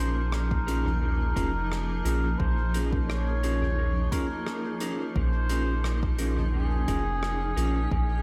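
A straight 87 BPM pulse in 4/4 carries this hazy, deep ambient dub fragment in Bb minor, resting on a Bbm7 chord: a round, up-front sub bass with tube saturation anchors it, an overdriven electronic kick enters at 0.5 seconds in the background, a soft-mallet kit of hi-hat, rim click and toms with dub echo sounds in a big room, a semi-hollow electric guitar adds dark, clean stabs through spring reverb and dub echo, a cloudy, evolving granular pad holds bright sustained chords, and a cup-muted trumpet plays a veiled, distant melody trailed by dub echo, set in light small-room ambience.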